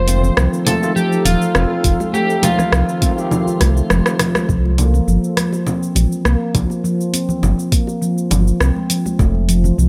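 A deep, round analog bass sits up front in this peaceful, warm organic downtempo excerpt, joined by a ringing, meditative handpan playing low-pass-filtered arpeggios with tape echo, an overdriven deep house drum kit of cabasa, congas, hi-hat and rim click, and very quiet, bright congas and bongos, with a soft electronic kick entering at 1.8 seconds. In the opening passage, a slightly broken-up electric slide guitar carries the melody through tape echo, while a cloudy, granular pad and a gritty tine electric piano with fast tremolo pump in the background. The guitar drops out at 4.2 seconds, and the pad and electric piano fall away at 4.5 seconds after a drum fill, leaving the bass, handpan and percussion to carry the lightly reverberant second half.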